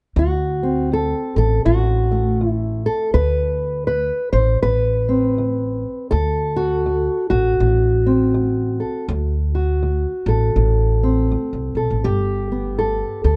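A dark, intimate booth recording with a short, close room sound carries this soulful, gritty acoustic country blues, an excerpt in D mixolydian at 81 BPM with a swung 4/4 feel. Up front, a fingerpicked old ladder-braced acoustic guitar carries the melody with a woody tone from its old strings, bathed in plate reverb, while a pizzicato upright bass on steel strings holds the low end beside it. Both play throughout, resting on D7 before shifting to G at 12.1 seconds.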